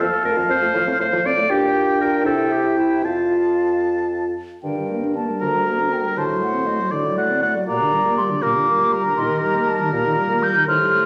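A quick, spirited classical-period movement for wind quintet in 6/8 at 80 BPM, played with rubato, begins cheerfully in F major before turning to G minor at 4.6 s. A hollow, pure-toned flute carries the melody high above a warm, up-front oboe on the second line, while clear clarinet and a dark, close-miked French horn fill in the accompaniment and a mellow bassoon with light vibrato holds the bass. The ensemble sits in a wet recital hall reverb, and the cut runs from a longer piece.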